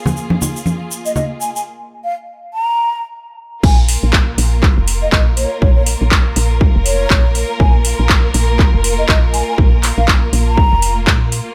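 A mellow, hollow concert flute carries the melody of this earthy afro house cut from 1.1 seconds, its airy, vibrato-tinged tone trailed by dub echo over lush, bowed string chords that pump with the sidechain. Ringing, low-tuned congas and a grainy egg shaker sound only briefly at the start. After a break, the drop lands at 3.6 seconds, where a punchy, overdriven electronic kick, a round, woody FM bass and a swung afro-pop kit with metallic hats, handclaps and crash, its cymbals and snare low-pass filtered, set a warm groove in a small room reverb.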